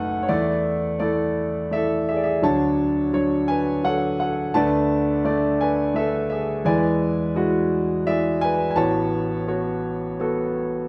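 A clear concert grand piano plays solo throughout this tender, nostalgic folk-pop ballad, a 10.9-second passage cut from a longer piece, moving at 85 BPM in an unhurried 3/4 with a straight feel and tuned to A4 = 438 Hz. Its open, up-front tone reaches from a deep bass up to clear upper notes, and a slapback echo trails each phrase as the harmony drifts from E7sus4 through Dmaj7, Bm7/D and E7 before settling on A69. Light reverb and a dark, warm production give the piece a soft, wistful glow.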